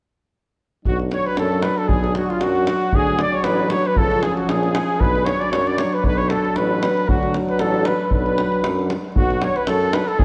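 A close-miked flugelhorn leads up front with a warm, lightly vibrato, soft-attacked melody, while a mellow trumpet sits distant and roomy in the background on a second line, in this virtuosic, bittersweet Balkan brass band excerpt at 116 BPM in a swung 2/4, moving through B minor, D and C#. A clear euphonium and a smooth-topped trombone, both with light vibrato, fill out the accompaniment, a vintage-toned tuba carries the bass, and a deep davul thumps up front from a small room. The dark production sits in a moderate concert hall reverb, with every part entering within the first second and playing through to about 10 seconds.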